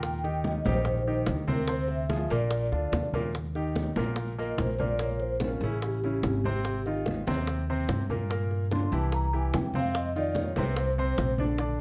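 Straight four-beat Afro-Cuban jazz rolls along with tight, high-tuned bongos struck with hard hands over low-tuned, thick-skinned congas that sound distant in a large room, while a woody, growly pizzicato upright bass sits up front. A clear concert grand piano with deep bass comps beneath a mellow, dark vibraphone played with soft mallets and a fast motor vibrato, giving this lively, sunny excerpt a smooth, ringing lead. After a drum fill at 3.1 s, the vibraphone takes a solo from 3.3 s, all captured with close, detailed microphones and little reverb.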